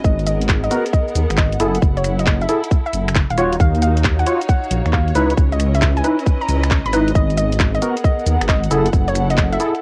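UK garage in a two-step swing at 135 BPM in G# minor, this late-night, soulful excerpt sets a tight, up-front electronic kick and a garage kit of finger snaps, handclaps, hi-hat and shaker, both with cassette tape colour, under a deep, rumbling detuned saw bass, a hollow, bouncy square pluck melody with chorus, a lush bowed string section with sidechain pumping and a mellow, percussive organ stab with ensemble chorus entering at 0.7 s, all moving through G#m9, F#m9, D#m9 and C#m9 chords in a light reverb with the character of a home cassette recording.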